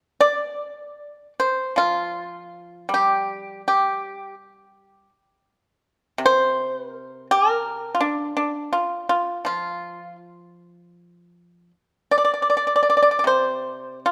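A solo pipa, played with fingerpicks, sits up front with a dry, percussive attack and a warm acoustic body, moving between C3 and D5 in a longing, elegant Chinese traditional piece in G yu mode. The pace hovers around 81 BPM in 4/4, but the beats are uneven and the phrasing breathes freely in rubato. A moderate recital-hall reverb surrounds the instrument across this 14.1-second fragment cut from a longer work.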